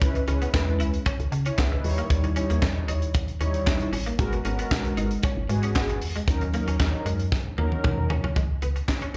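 A woody, round FM bass sits up front beside a tight, small-room funk kit of kick, high-tuned snare, hi-hat, handclaps and toms in this danceable early-eighties boogie funk excerpt, with dark, detuned sawtooth synth brass carrying chorus, vibrato and slapback echo in the accompaniment until 8.1 seconds, a twangy, slightly broken-up picked electric guitar riff entering at 0.2 seconds low in the mix, and a drum fill from 7.3 seconds, all heard as a live gig through the venue's PA with light club reverb.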